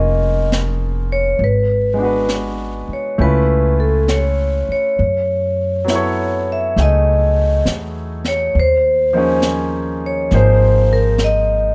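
Swung eighths in a slow 4/4 carry this tender, romantic jazz ballad, cut from a longer piece, with a brush kit of airy snare and hi-hat joining at 0.5 seconds beneath a woody pizzicato upright bass placed up front. A ringing, metallic vibraphone struck with medium hard mallets, its motor off, sings the melody through a smooth plate reverb, while a clear grand piano with long sustain comps chords moving from Bbm7 through Db7alt to a closing Ab69. The production is dark and warm, set in a light room reverb.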